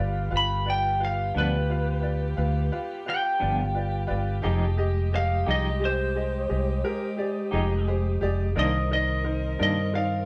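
Slow blues in a straight 12/8, mournful and soulful, this short passage is cut from a longer performance by a band playing live in one room with moderate studio reverb. A lightly driven lead guitar carries the melody as a solo throughout, its tone bright, twangy and slightly broken-up, picked and compressed and sitting up front. Beneath it, a fingered electric bass sounds dark and round, also up front, while a bright upright piano adds woody, slightly detuned accompaniment with audible action noise. A mellow tonewheel organ with a slow rotary speaker and a tight saxophone section with light vibrato hold sustained chords in the background. A clean semi-hollow electric guitar with tremolo joins at 1.3 s, and the harmony moves from G7 to Fm9 and then to Cm9.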